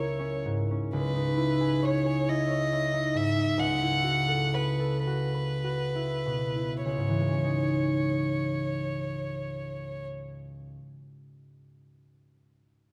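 Hazy and mysterious, this short excerpt from a longer classical work is an impressionist duo for violin and concert harp in C# minor, moving in a rubato 6/8 at roughly 31 to 47 beats per minute counted in dotted quarters. A single violinist carries the melody between B4 and F#5 with a rich, smooth, even bowed tone and vibrato, while the acoustic harp supplies fingerpicked, ringing accompaniment spanning C#2 to C#5. Both instruments sit up front, and the harp is a touch stronger than the violin. The pace keeps slowing through the opening phrase, where the harmony drifts from C#m6 and C#m9 to B9sus4/C#, before a new section settles on C#madd9 at 6.8 seconds. The violin falls silent at 10.1 seconds, leaving the harp to ring alone until 11.0 seconds, all held in the moderate reverb of a scoring stage.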